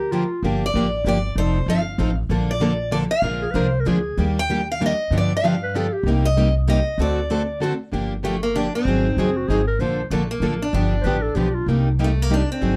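Swinging in a brisk triple metre, this virtuosic, gypsy-jazz cut features a bright, boxy parlour guitar carrying the melody up front with audible finger squeak, a vibrato-laden jazz clarinet weaving a second line in and out, a woody, thumpy gut-string upright bass plucking underneath, and two picked accompaniment guitars, one a plugged-in parlour and the other a full-bodied dreadnought, all in a dry, close 1970s-style studio sound with light reverb.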